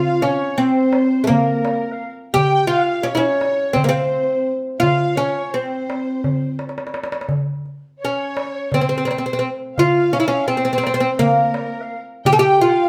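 A stately Turkish makam ensemble piece in C makam hicaz opens with a bright, woody fretless oud plucked with a plectrum on double strings, sitting up front, while a dark, lush bowed violin section with vibrato and a classical-style clarinet of warm tone hold second lines in the background. At 170 BPM in a straight 7/8, a small, high clay-shell darbuka played with soft hands comes in at 0.2 s, its compressed, saturated sound breaking into a fill from 6.6 to 7.3 s. The band plays live in one room, wrapped in a wet studio reverb, in this short cut from a longer piece.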